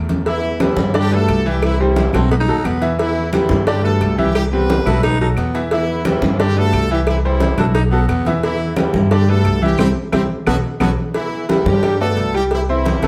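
Salsa at a brisk 176 BPM in E minor, this passionate, fiery excerpt cycles through Em, G, C and B7 over a thumpy, woody pizzicato upright bass up front, a bright, polished grand piano, and congas, tight high-tuned cowbell and woody claves sitting in the background. A brilliant horn section carries the melody in octave doubling with light vibrato, while a raspy, gritty baritone saxophone adds a second line from 2.1 seconds. A band accent lands at 9.8 seconds with a drum fill at 10.5 seconds, all set in moderate studio reverb heard from further back in the room.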